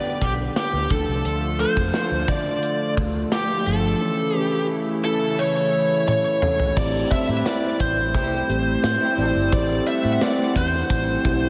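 Dramatic and nostalgic, this 1980s-style pop passage moves at an unhurried 87 BPM in a straight 4/4, cut from a longer piece and bathed in a lush hall reverb that gives it a big arena sound. A biting, overdriven lead guitar sits up front carrying the melody, its picked notes trailed by delay, while a mellow, clean tine electric piano with phaser and slapback echo supplies the accompaniment. Beneath them a shimmering, retro pulse-width pad holds sustained chords with a slow attack and long release, and a dark, round, foam-muted fingered electric bass adds punch from 0.2 seconds. The gated drum kit, with its punchy kick, medium-tuned snare, bright cymbals, tambourine and toms, rings in a stone room and delivers a fill from 6.1 seconds that leads into the next section. There the harmony settles on Am7, and a distant, gently vibrato horn section adds soft background stabs with slapback echo from 7.1 to 9.3 seconds.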